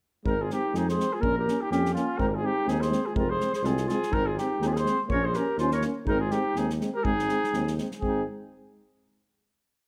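Mellow euphonium and tuba open this short, festive Balkan brass band piece at 0.2 s, joined almost at once by flugelhorn, clarinet, French horn and drum kit in a swung 2/4 at 124 BPM in Ab major. The vibrato-laden flugelhorn carries an up-front, motif-based melody in sentence-like phrases, with the smooth-topped clarinet adding a harmony line mostly in thirds, while French horn and euphonium pulse out chord lines in the background and the roomy tuba plays root-and-fifth bass on the main beats. An acoustic kit with a punchy kick and medium-tuned snare plays a two-stick pattern, and a recital hall reverb frames the virtuosic, classically styled playing until a final chord arrives at 8.0 s.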